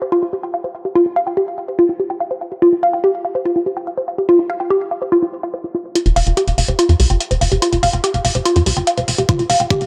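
A woody, wave-folded pluck opens this intense, hypnotic psychedelic trance excerpt at 144 BPM, its percussive riff pumping with sidechain, chorus and delay over an F chord, before metallic electronic hi-hats join at 6.0 seconds and a tight, nasal sequencer bass follows at 6.1 seconds to drive a build-up, capped by an overdriven, knocking kick drum in a fill at 9.3 seconds, all within a dark production under light reverb.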